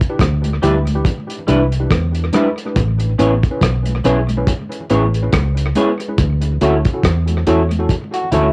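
A home cassette recording with light reverb carries this sweet, smooth lovers rock reggae excerpt, where a cloth-damped, muffled drum kit with tight kick, hi-hat and rim click sits up front beside a dark, round, foam-muted fingered bass, while hard-handed congas with tape echo stay in the background, a worn, slightly out-of-tune tine electric piano adds chorused, tape-echoed accompaniment, a bright, twangy guitar plays lush-chorused stabs, and a second, compressed guitar slips in with arpeggios at 8.1 seconds.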